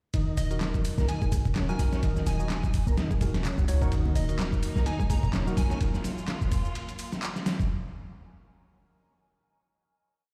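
Breakbeat with a gritty, swaggering swing, built on a dusty, overdriven sampler-style break of thumpy kick, ride and snare, up front and re-recorded in a small room, with a quieter analog machine layer of claps, hat and shaker. A deep, boomy 808-style bass skips under a 16-step tonewheel organ riff carrying chorus vibrato, key click, 12-bit grit and dub echo, while tine electric piano stabs shimmer with tremolo, and a square-wave unison lead with an old record sound sits in the background with short catchy phrases. At 3.9 seconds a lush bowed string pad pumps in, joined briefly by bright, very quiet congas at 4.1 seconds, all played through a big sound system in a bare room with large studio reverb.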